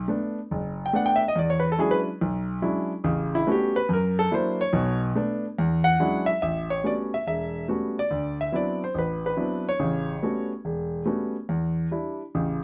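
Playful and sophisticated, this short solo jazz passage swings along at 142 BPM in 4/4, its eighth notes carrying a lilting swing feel in A mixolydian. A single grand piano carries everything, its tone smooth and vintage with a short sustain, sitting up front and spanning from E1 in the deep bass to G5 in the upper register. The opening passage moves through rich extended harmony, cycling Bm7, E13, A13 and an F#aug7 before returning to the Bm7 and E13 turn. From 6.4 seconds a new section shifts to broader changes, with A13 giving way to D13, back to A13 and finally an Em7. A moderate studio ambience with a half-second reverb tail lends the instrument a natural sense of space as this fragment of a longer piece closes at 12.6 seconds.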